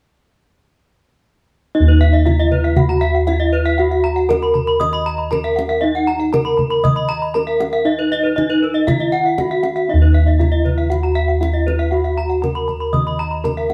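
Balinese gamelan at 118 BPM in Eb pelog, shimmering and brilliant: from 1.7 s a wooden-mallet bronze metallophone carries the up-front melody with a boxy closeness, two horn-mallet metallophones spin airy, ringing arpeggios above it whose paired tuning sets off shimmering beats, round, beating bossed gongs hold the bass, and a tight kendang played with soft hands keeps time, all as an ensemble playing live in a moderate stone room.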